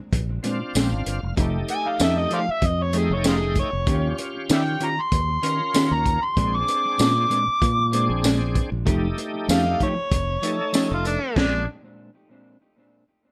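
A straight-eighth groove at 96 BPM in 4/4, with a light swing on the sixteenths, drives this gritty, soulful blues cut from a longer piece. The crunchy breakbeat kit sits up front with a punchy kick, a high-tuned snare, dark cymbals, hi-hat, china and tambourine, its saturated small-room sound rolled off at the top. Beneath it, a round fingered electric bass sits up front. A mellow, clean electric guitar adds fingered stabs through tape echo, and a bright tonewheel organ opens with a short fill at 0.4 seconds before settling into shouting accompaniment with key click, light overdrive, chorus vibrato and a slow rotary speaker. From 1.7 seconds an amplified, overdriven harmonica takes the solo melody, full of vibrato, tongue slaps and scooped notes in a jazz style, as the harmony moves through Bb9, F9 and Eb9 under a light reverb.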